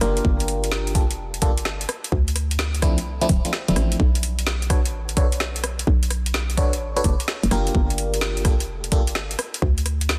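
A two-step UK garage groove at 128 BPM in 4/4, swung on the sixteenths, with a bouncy, skippy feel across this short cut from a longer piece. An up-front garage kit of metallic hi-hats, rim clicks and a woody snare runs throughout, overdriven and set in studio reverb, while a knocking, overdriven electronic kick enters at 0.2 seconds and drops out briefly between 3.5 and 4.0 seconds. Beneath it, a hollow, punchy FM bass in the low register pumps against the sidechain. Glassy FM electric piano stabs with a bell-like attack and a noise layer pass through chorus, phaser, a low-pass filter and tape echo, outlining Gm7, Dm9 and Bm7 before returning to Gm7 and stopping at 9.0 seconds. The mix sits in light digital ambience under a dense, heavily limited modern master.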